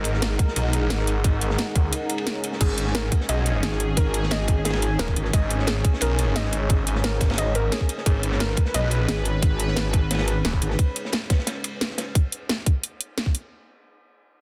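An excerpt of dark, aggressive technical drum and bass in G# minor at 176 BPM opens straight into the drop with a snarling, detuned saw bass under a sweeping resonant pad with 12-bit grit, a crunchy breakbeat kit in the background beside an ethereal airy pad, an up-front layered kit with cracking snare and metallic hats, and a tight electronic kick, while a warbly dusty pluck arpeggiates with dub echo from 2.6 s and a metallic FM wobble bass cuts in at 3.6 s and again at 9.1 s, the saw bass, pads and pluck pumping under sidechain, all tense in a dense, heavily limited mix.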